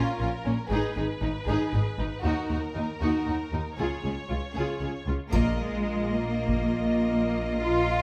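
Moving in a straight 6/8, this heroic, relentless excerpt from an epic cinematic orchestral score builds for its first 5.3 seconds on bowed strings. Clear, distant, lush violins carry the melody over a second violin line, while intense violas accompany and focused cellos join rich, up-front double basses on the bass, all set in a moderate scoring-stage reverb. At 5.3 seconds the ensemble lands an accent: mellow French horns enter with tight sustained chords, heavy, dry taiko drums strike until 6.7 seconds, and a very quiet triangle adds a dark metallic glint.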